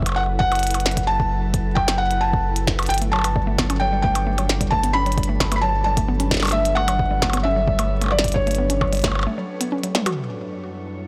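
Cerebral and eerie, this IDM excerpt at 132 BPM opens with a felt-muted upright piano carrying a soft, intimate melody with audible action noise and tape echo, over a glassy FM pad whose ensemble chorus, 12-bit sampler grit and sidechain pumping hover behind a round analog bass with tube saturation, moving from F#m7 to Gmaj9#11. An overdriven soft electronic kick and an up-front glitchy kit of clicky hats, tiny snare, percussion blips and toms, all low-pass filtered, drive the groove, while a woody mallet-like FM pluck adds chorused, delayed arpeggios from 3.0 s. The bass drops out at 9.3 s for a brief break capped by a drum fill at 9.8 s, and the whole recording carries a blown-out, overdriven digital ambience.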